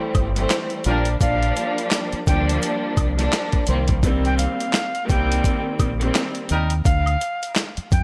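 A swung 85 BPM groove in 4/4, with 60% swing on the sixteenths, drives this gritty, reflective boom-bap hip-hop excerpt in G minor, cut from a longer piece. The sampler-style drum kit sits up front and sounds compressed and dusty, with a thumpy kick, a medium-tuned snare, hi-hat and handclaps. An egg shaker and woodblock stay in the background, and a deep, round, punchy fingered electric bass plays low underneath. A lush, woody string section with vibrato carries the chords from the start, filtered and colored by cassette tape, until it stops at 6.5 s. Short, mellow horn stabs with a vintage jazz flavor appear twice, filtered and touched with tape echo, and from 1.2 s a breathy, bright flute with a crisp chiff plays a high melody, also treated with tape echo. The harmony moves through Am7, Gm7/Bb, Cm7 and Dm, and the mix carries light reverb, a small room ambience and lossy compression artefacts.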